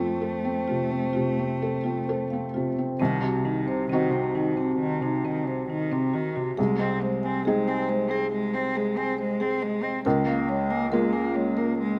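In a rubato 4/4 that drifts between 64 and 70 BPM, this fragile, melancholic neoclassical piece for piano and strings unfolds as an excerpt from a longer work. A felt-muted upright piano carries the accompaniment from the low register up to the middle, its soft, mellow tone sitting intimate and up front. A single bowed cello plays a second line with rich vibrato, smooth and even, placed close and up front. Marimba arpeggios struck with soft mallets on padauk bars add a woody, round glow, passed through a tape echo, before falling away at 11.7 s. The harmony moves from F to Cdim at 3.0 s, then through Ab/C to Bbm7/Db, all set in a moderate recital hall reverb.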